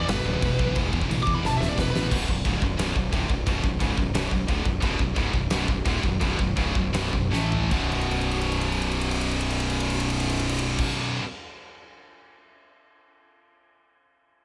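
Driving straight 4/4 at 151-177 BPM, this epic, aggressive heavy metal in B minor is cut from a longer piece and opens mid-flight on an E5 chord. A dark, high-gain lead guitar solo with tape echo soars through the opening, ending at 2.1 seconds as the harmony moves to Bm. Beneath it, three distorted, picked rhythm guitars churn out the riff from the background: two heavy, one double-tracked, and a scooped one. A growly, fuzz-laden fingered bass adds overdriven weight. An up-front acoustic kit with a punchy kick, fat snare, crashes, ride and toms rings in a bright stone room, throwing in several fills. The tempo slows between 4.8 and 7.7 seconds, where the music shifts through A5 to B5, all set in a small room ambience.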